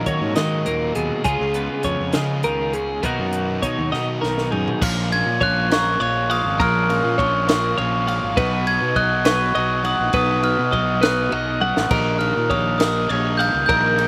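This restless, wistful stretch of math rock and midwest emo in 6/8 opens with bright, twangy twelve-string electric guitar arpeggios over a second twelve-string part steeped in spring reverb, together with a dark, double-tracked overdriven guitar riff, a growly fuzz bass and a compact cocktail drum kit with a high-tuned snare and punchy kick. After a drum fill, the reverb-soaked twelve-string drops out at 4.8 seconds, and at 5.1 seconds a bell-like glockenspiel played with soft plastic mallets takes up the melody, ringing out close and upfront with slapback echo. The outdoor recording sounds dry and direct, with little reverb.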